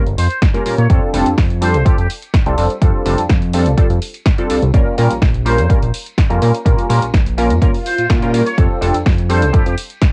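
A funky, detuned sawtooth polysynth comp opens this joyful, sunny stretch of filtered disco house at 125 BPM in F major, its filter-plucked chords pumping against the beat through chorus, phaser and a low-pass filter, with a cassette-tape haze. A fat, mellow analog bass sits up front beneath it, sidechained and filtered, while a layered electronic kick punches hardest in the mix alongside an analog drum machine's snare and pumping hi-hats. A very quiet, distant tambourine adds faint shimmer from a large room. A muted trumpet section enters at 0.2 seconds with a nasal, straight-muted tone and light vibrato, roughened by 12-bit sampler grit, tape echo and a low-pass filter, then returns at 5.5 seconds. The harmony alternates between Bbm6 and F69. An electronic swell sounds in the background at 7.8 seconds, and the whole sits in light reverb with the character of a home cassette recording.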